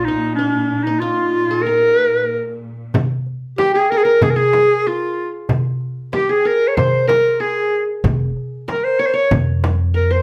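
A soulful, longing Arabic maqam ensemble fragment opens with a breathy, jazz-inflected clarinet carrying the vibrato-laden melody up front over a mellow, bright-edged fingerpicked qanun second line and a rich bowed cello section drone, before soft-handed clay darbuka and a deep, close frame drum enter at 2.9 s and a woody, thumpy pizzicato upright bass returns at 8.0 s, all set in a reverberant studio space.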